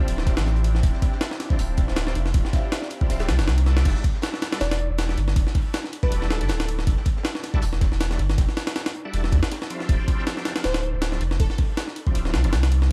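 A pitched-up, compressed sampler-style jungle kit sits up front, its thumpy kick and medium-tuned snare carrying the grit of a large room, while a very quiet acoustic breakbeat kit adds a dark, saturated layer of hi-hat and snare beneath it. This is raw, nostalgic drum and bass at 159 BPM in 4/4, with a slight swing on the sixteenths, cut from a longer piece and resting on a Dm11 chord. A deep, thick triangle sub bass holds the low end throughout, and the kick drops out between 3.1 and 3.9 seconds. A lush, detuned unison pad with chorus and phaser sustains chords only until 3.5 seconds, while a shouting tonewheel organ with key click, slow rotary speaker and dub echo places stabs in the background until 12.6 seconds. A catchy, plucky unison lead with vibrato and a moving notch appears briefly from 4.6 seconds and again later, trailing dub echo, and the whole mix is steeped in echo-heavy digital ambience and vinyl crackle.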